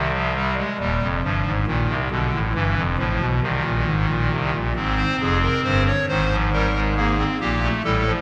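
A hollow clarinet reed stop on a solo pipe organ, set up front with tremulant and baroque voicing, carries this contemplative yet driving baroque-style four-part fugue in F minor at 45 BPM in 6/8, spanning Eb1 to Db5 and moving from Cm through Bdim and Fm to a closing Gm9 within a short 8.2-second section cut from a longer piece, all bathed in a wet church reverb with a 3.3-second decay.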